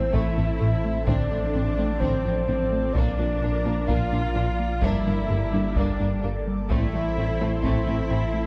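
A reedy FM lead carries the melody over lush, intense symphonic violas, a breathy pad with chorus and phaser, a soft round pluck playing arpeggios, a rubbery square-wave bass riff and a deep sub bass. This tense, brooding hybrid orchestral and electronic film cue moves at 128 BPM in D minor, with chorus and delay on the lead. From 0.1 seconds a focused chamber violin section adds a background second line, while very quiet double basses, cellos and a close, dry taiko ensemble struck with hard sticks fill the low end, all set in a moderate scoring-stage reverb with a dark, warm production.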